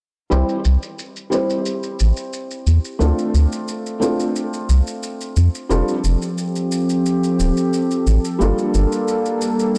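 Organic downtempo at 89 BPM in a straight 4/4, earthy and warm in mood, this clip cut from a longer piece pairs a soft, felt-muted upright piano with delay and a low-pass filter against a round, deep analog bass sitting up front, an overdriven, electronic shaker re-recorded in a small room, and a smooth, warbling, detuned pad with chorus that enters at 5.7 seconds, moving through C, Dm7, F6 and Gm9 in a lightly reverberant, blown-out mix.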